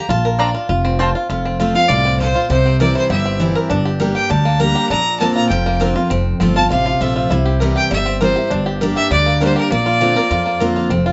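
Bluegrass at a driving 200 BPM in F major, this rustic cut from a longer piece opens with a bright, full-bodied jumbo steel-string guitar picking the chords, a twangy, percussive fingerpicked banjo playing arpeggios and a thumpy, woody pizzicato upright bass on gut strings, while a warm double-strung mandolin adds brief stabs at 0.4 seconds before an intense, clear bowed fiddle with light vibrato and a smooth top takes the melody up front from 1.8 seconds over a cycling Bbadd9–F–C–Gm progression, all set in a moderate studio room with a softened high end.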